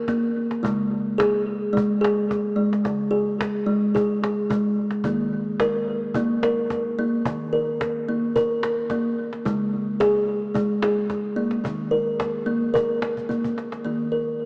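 A mellow, woody kalimba sits up front, ringing out gentle arpeggios through an analog delay over chords that alternate between Eb5 and Db5, giving this short excerpt of meditative world music a hypnotic, straight 4/4 feel. A soft-handed cajon with faint snares plays quietly beneath it and closes with a brief fill at 13.2 s. A long plate reverb soaks the mix in a dreamy haze, though the overall sound stays small, as if heard through a modest speaker.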